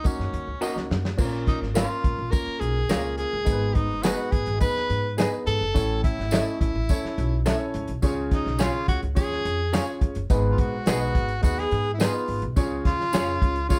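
A breathy, whispered tenor saxophone sits up front with light vibrato and a soft attack, carrying the melody through this driving, urgent excerpt of uptempo 1960s-style soul. Beneath it, a clear, woody upright piano plays the accompaniment, a pizzicato upright bass adds a woody, warm low end, and a dry, dark soul drum kit with a tight kick and smooth cymbals drives the groove, adding a fill from 0.6 to 1.2 seconds. A jingly tambourine and a slightly broken-up, lo-fi electric guitar adding compressed stabs from 0.6 seconds complete the sound of a band playing live together in one room with moderate reverb.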